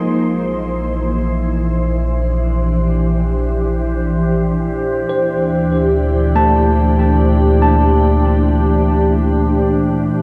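Luminous and warm, this ambient excerpt drifts in free time in B-flat Lydian, tuned slightly sharp of standard pitch. A glassy, ethereal FM pad holds sustained chords up front throughout, its slow attack and long release softened by an ensemble chorus and its own reverb, while a filter sweep runs across it from start to finish. Beneath it, a deep, round sine sub bass sustains for the full 10.2 seconds, sitting up front with a fast attack. A worn, slightly out-of-tune tine electric piano sounds briefly at the opening, then returns at 5.1 seconds with arpeggios that reach into a diffuse ambient delay, its clean tone heard as if through built-in speakers. The harmony moves from B-flat to D5 at 5.1 seconds, and the whole passage sits in a huge, wet reverb with a 6.9-second tail and the soft patina of cassette tape.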